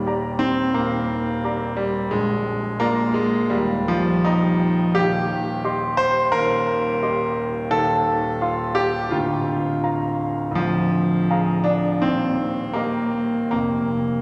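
Passionate and hopeful, this romantic classical character piece for solo piano moves with rubato in 4/4 at 76-89 BPM, settling into Bb major from 5.0 s as a clear, up-front concert grand with deep bass and long sustain spans Bb0 to C6 through rich harmonies like Ebmaj7, Cm/Eb and F7/Eb, all bathed in a wet concert hall reverb across this 14.2-second cut from a longer piece.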